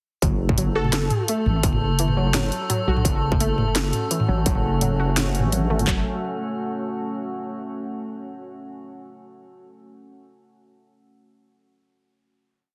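A distorted, overdriven kick and handclaps from an industrial kit land at 0.2 s alongside a second kit's cracking snare, bright closed hats and low toms, setting a dark, cinematic half-time drum and bass drop at 170 BPM in F# minor, while a deep, detuned wobble bass holds long gliding notes and a dusty, lo-fi pluck cycles a 12-step arpeggio loop that drifts against the bar. An eerie, metallic inharmonic drone sustains a high note from 0.7 s, a punchy sawtooth lead with 12-bit grit flashes a brief phrase, and a moody pad with sidechain pumping arrives at 3.9 s. The heavily compressed, radio-like mix sits in a light digital ambience and resolves onto a final F#5 chord.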